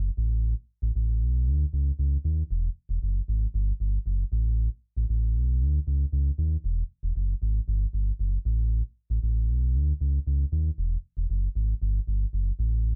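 A sub bass doubled at the octave opens this funk fragment and carries it alone for the full 13 seconds. Its sine-like tone is deep and full, with a fast attack and sustained notes that sit up front in the mix, ranging from E1 to D#2. The groove moves in a straight 4/4 feel, and the mood is smooth and feel-good. A brief opening passage gives way at 2.5 seconds to a longer second section that runs to the end of the clip. The sound is dry and close, in the manner of a 1970s studio, with only a touch of light reverb. The passage is cut from a longer piece.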